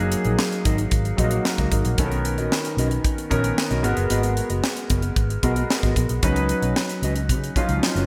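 A bright, polished 1980s-style digital production bathed in lush hall reverb frames this slick, urban jazz-funk pop excerpt in G# minor at 113 BPM, where an up-front concert grand piano with long sustain and subtle chorus comps through F#69, Bmaj9, G#m9 and C#9sus4 while a dark, clean electric guitar riff sits in the background, a round, foam-muted fingered bass punches underneath, and a crisp, airy fusion drum kit with a high-tuned snare and punchy kick enters at 0.1 s.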